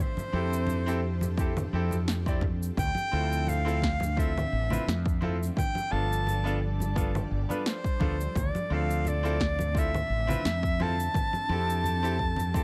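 A clear, close-miked soprano saxophone opens this relaxed sunset chillout excerpt at 86 BPM in D minor, singing an up-front melody between C5 and A5 with vibrato, a soft attack and a trail of tape echo. Underneath, a layered electronic kit of cabasa, congas and a punchy overdriven snare sets a gently swung 4/4 groove, and from 0.1 s a very quiet, ethereal pad with a slow attack and chorused shimmer holds sustained chords beneath it all. Bright acoustic congas join almost at once, sitting in the background. From 0.3 s a brilliant, vintage-toned grand piano adds long-sustaining accompaniment through a digital delay, while a round, dark fretless bass sits up front between G1 and F2. A deep, overdriven electronic kick arrives at 1.4 s. The harmony drifts through Fmaj9, Dm9 and G9, back to Dm9 and then returns to Fmaj9, all within a small room.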